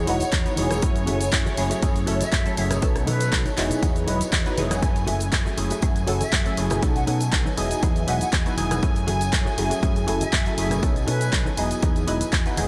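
The excerpt opens at once on a funky, detuned polysynth comp with chorus and phaser, lush bowed strings carrying 12-bit sampler grit, and an overdriven fingered bass, all pumping to the sidechain as the punchy analog drum machine, tambourine and congas, and an up-front, tape-warm electronic kick fall in within the first 0.3 seconds. This filtered disco house groove at 120 BPM in F# dorian swings lightly on the 16ths and moves through a nostalgic Emaj9, F#m9 and B9 cycle, while a breathy, distant jazz flute carries the melody and a dark, clean electric guitar riff sits in the background. A clean guitar fill appears at 7.8 seconds, and light digital ambience frames the whole.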